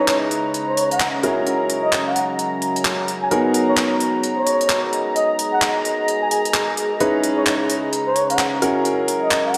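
A swung two-step garage groove drives this bouncy, late-night excerpt. Its electronic drum kit arrives at 0.1 seconds with crisp hats and handclaps, layered and up front, with a tape-warm, large-room character. Over it, a trumpet with a bucket mute carries the melody in a veiled, breathy, whispered jazz voice, its scooped notes and soft attack trailed by tape echo. A clear concert grand piano punctuates with open, long-sustaining stabs of deep bass weight, roughened by vintage 12-bit sampler grit and tape echo. Beneath, a smooth, warbling analog pad of detuned sawtooth and sine tones with chorus sustains the chords, while a moody ambient pad with a sub octave, slow attack and long release adds texture, chorused and bathed in its own reverb. The chords move through C#m9, F#9 and G#m9, and a lush hall reverb soaks the mix in a dreamy haze.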